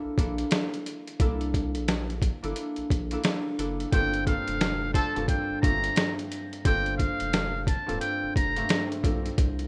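A muted trumpet with a metal mute takes the solo melody from 3.9 seconds, its brilliant, buzzy, thin tone sitting close-miked and up front, with light vibrato and scooped notes in a jazz style. Underneath, this dark, moody boom-bap hip-hop cut moves at 88 BPM in 4/4 with a swung sixteenth feel in G dorian, shifting from C13 to Gm11 as the trumpet enters. A mellow acoustic concert harp, fingerpicked and ringing, carries the accompaniment through a cassette-tape coloring. A deep, thick, saturated sine sub bass sustains below it. The sampler-style drum kit is gritty, compressed and pitched down, with a thumpy kick, a medium-tuned snare and hi-hat, carrying vintage 12-bit crunch and the sound of being re-recorded in a large room. A tight, clear jazz horn section drops a brief stab with tape echo at 4.9 seconds, all within a rough home-demo mix with studio ambience, in a short piece cut from a longer track.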